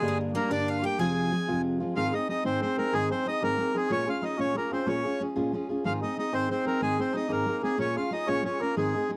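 A spirited, driving Celtic jig in Ab major opens with all four parts sounding together at 124 BPM in a straight 6/8. The accordion carries the melody up front, its reedy, full tone close-miked and dry, while a dark, fingerpicked steel-string dreadnought guitar sits equally forward with the accompaniment. In the background, a bright, metallic Irish bouzouki adds a picked second line on double strings with a slapback echo, dropping out at 1.6 seconds. A mellow cor anglais plays a second line in classical style with light vibrato, staying present behind the lead through to the end. The harmony moves from Gm and Fm into an alternation of Ab and Bbm7 once the second section begins at 2.0 seconds. The sound is that of a dry, close 1970s-style studio in a small room, and the passage is cut from a longer piece.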